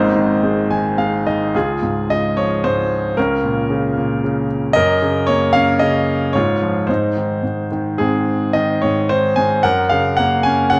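Hopeful and sunny, this short cut from a longer classical piece is a lyrical solo piano work in Db major, moving at 111 BPM in 3/4 with a free, rubato feel. A brilliant grand piano sits up front and intimate, with audible action noise and long sustain across a range from Ab1 to Ab5; a fill from 0.4 to 1.5 seconds leads into the main passage, where the harmony moves through Db, Gb and Ab. A moderate recital hall reverb surrounds the polished instrument within a dark production.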